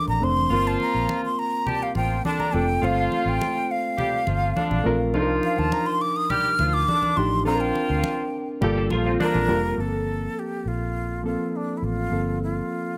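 Smooth and bittersweet, this excerpt of lush 1970s-style soul moves at 104 BPM in a straight 4/4, settled in G minor. A breathy, slightly unsteady jazz flute with vibrato, a soft attack and lifted highs sits up front, soloing over the first 9.8 seconds. Beneath it, a barky, reedy electric piano with light overdrive plays the accompaniment through its built-in speakers, while a dark, round, foam-muted fingered electric bass anchors the low end with a punchy, amped tone. Congas with a thick, medium-tuned skin add live-room percussion, and a tight vintage horn section with light vibrato plays jazz-style stabs. A twangy, slightly broken-up electric guitar through a small old amp, carrying an ensemble chorus, flicks in for a brief riff at the very start and again at 8.8 seconds. The harmony drifts through Bbmaj9, Gm11, a rootless Cm11, Bbadd9 and Gm9 before returning to Gm11, all bathed in light reverb.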